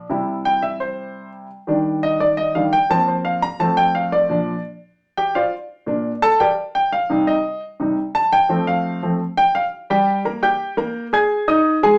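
A wet studio reverb with a short 0.5-second decay surrounds a clear concert grand piano that sits up front, its deep bass and short sustain giving the sound a natural presence. This is a sunny, festive Latin fragment, cut from a longer piece, moving at a brisk 171 BPM in a straight 4/4 and tuned to A4 = 441 Hz. The piano plays solo throughout, spanning a generous range from Bb2 up to Ab6. Its harmony travels from C through Ebmaj7, a Fsus4 resolving to F, then Bbadd9, Gm/Bb and Cm before landing on F. At 9.9 s a new section begins, shifting to Gm and closing on a bare Ab5 chord at 11.3 s.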